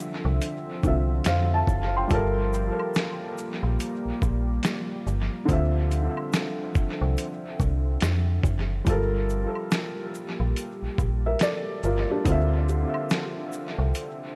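Lo-fi hip hop with a nostalgic, reflective mood, built from a felt-muted upright piano playing a soft, intimate accompaniment through a dub echo over a deep, moody pad that adds chorus and slow-blooming, detuned sustain as the harmony moves between Dm9 and Gm9. A gritty, overdriven sampler-style drum kit with a thumpy kick and fat snare sits up front beside a metallic FM bass whose fast-attack notes gently decay, while a close, dry tube shaker and woodblock add light texture in the background. The echo-heavy mix carries a cassette-tape character and light reverb, and the passage is cut from a longer piece.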